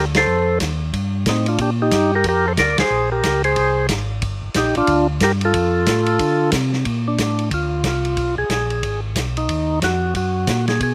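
Soul jazz organ trio in B-flat major, swinging hard at 182 BPM with a greasy feel in this short cut from a longer piece, where a clean, percussive tonewheel organ with audible key click and slow rotary speaker carries the melody up front while a second, mellow tonewheel organ, round and lightly overdriven with chorus vibrato and its own slow rotary, holds down the bass. A vintage acoustic drum kit enters at 0.1 seconds with dark cymbals, a medium-tuned snare and a punchy kick, its top rolled off, and the band hits accents at 0.1 and 2.7 seconds. At 6.9 seconds the harmony turns from B-flat major 9 through A-flat minor shades to E-flat minor as the organ takes a solo, all captured dry and close with little reverb.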